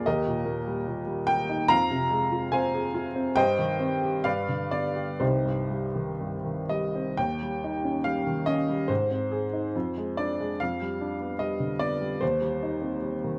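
A woody, vintage upright piano sits up front with long sustain in a passionate, bittersweet romantic character piece in C minor, moving with rubato at 60-75 BPM in 2/4 across a range from C2 to Bb5, its harmony turning from Eb through G7 and back to C minor before a second section opens on Eb7 at 7.2 s and settles on Cm/Eb, all heard in a wet stone-room reverb with a dark, warm production on this short cut from a longer piece.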